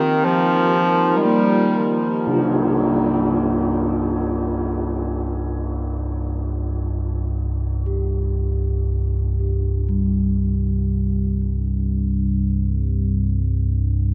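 A warm, up-front bass clarinet carries a brief melody over a deep, moody pad, a very quiet reversed swelling texture and a ringing bronze gamelan-type metallophone in free time, before a dark tam-tam strike at 2.3 seconds gives way to an ominous, rumbling drone from 2.7 seconds in this dark, unsettling C minor dark ambient piece, all soaked in a huge, dreamy reverb.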